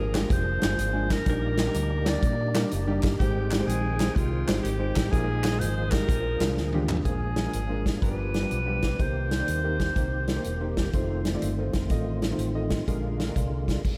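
A breathy alto saxophone carries the melody in a reverent, soulful uptempo gospel excerpt, its subtoned, scooped jazz phrasing trailing a diffuse ambient delay until it drops out at 10.8 s. A woody, slightly detuned upright piano and a fat, lightly overdriven tonewheel organ with key click, chorus vibrato and slow rotary speaker sit in the background, while a punchy, amped fingered electric bass and an up-front acoustic drum kit drive the swung groove, with very quiet hollow group handclaps until 7.0 s and a drum fill at 6.6 s. The dreamy mix is soaked in a lush hall reverb.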